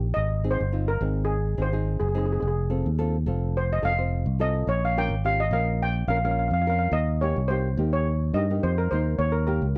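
A dry, close recording with a 1970s studio feel sets a bouncy, sunny calypso in Ab major at 106 BPM in straight 4/4, cut from a longer piece. Up front, a shimmering lead steel pan struck with hard rubber sticks carries the melody as a featured solo from 0.2 s, its metallic tone set in a boxy small room, while a fingered electric bass, direct and amped, anchors the low end. A thumb-plucked classical nylon-string guitar adds warm acoustic accompaniment beneath, as the harmony moves through Abmaj7, F7, Bbm7 and Eb before landing on Eb7.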